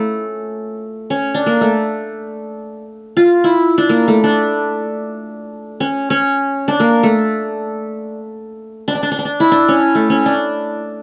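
Hypnotic and melancholic, this brief passage from a longer Arabic maqam piece unfolds in free time, with a solo acoustic qanun playing alone from 0.0 to 11.0 seconds in a range from A3 to F4, tuned to A4 = 439 Hz. The fingerpicked qanun sits up front with a bright-edged attack from its triple strings. A moderate studio reverb surrounds it, and the sound carries the worn character of old cassette tape, with a warbly pitch drift.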